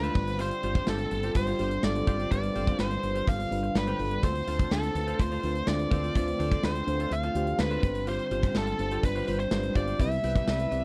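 This is a moody, dramatic 1980s-style pop excerpt in straight 4/4 at 125 BPM, built over a slow turn from G7sus4 to Dm7 and back before landing on Cmaj7 near 10.0 seconds. A biting, overdriven lead guitar carries the melody up front, bright and picked with a slapback echo, while a gated 80s drum kit drives underneath with a tight kick, a medium-tuned snare, bright cymbals, hi-hat and tambourine in an airy stone room. A woody fretless bass holds the low end with a dark, round, hollow-bodied tone. An FM electric piano layered with a soft pad plays lush, dreamy accompaniment coloured by chorus and tremolo, and a bright twelve-string electric guitar repeats a twangy, compressed riff in the background through lush chorus and slapback echo. A smooth, warbling analog pad sustains very quiet chords beneath, and a violin section slips in for a single bowed note at 10.5 seconds, all in a dry mix with little reverb.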